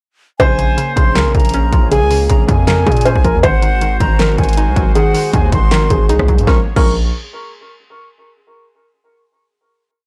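A dry, gritty recording carries this short, dark and menacing trap piece at 158 BPM in a half-time feel, where a looping, mellow grand piano melody with audible action noise and a sparse, breathy, close-miked flute counter-melody with vibrato and analog delay repeat like sampled loops over Bbm7 and Ab7. Underneath, a hollow, nasal square pluck with chorus plays an arpeggio in eighths, and a smooth sawtooth pad with chorus sustains chords in the background. Up front, a punchy electronic drum kit with a fat snare layered with clap and fast hi-hat rolls drives the beat, and a heavy, distorted 808-style bass with long sub-bass notes and pitch slides rings on until 7.1 s into the final Bbm7 chord.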